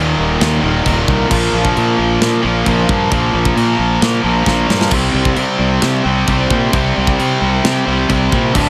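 Epic and aggressive, this heavy metal excerpt drives at 132 BPM in a straight 4/4, cut from a longer piece, with three bright, picked guitars (one overdriven and double-tracked, two distorted, one of them high-gain) playing riffs in the background over power chords moving from Eb5 to Bb5 and then C5. A fuzzy, overdriven fingered bass sits up front, and a tight acoustic drum kit with a medium-tuned snare, tight kick, china and crash cymbals enters at 0.4 seconds. A brief drum fill at 4.5 seconds sets up the change to C5 in the studio room.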